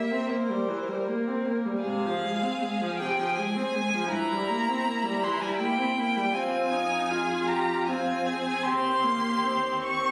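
A clear, focused first violin carries the elegiac, yearning melody up front in this slow, rubato romantic string quartet movement in 3/4, cut from a longer piece, above a smooth second violin line, a rich viola accompaniment and a close, even cello bass, all four bowed with vibrato and set in a wet recital hall reverb captured on a phone in the room.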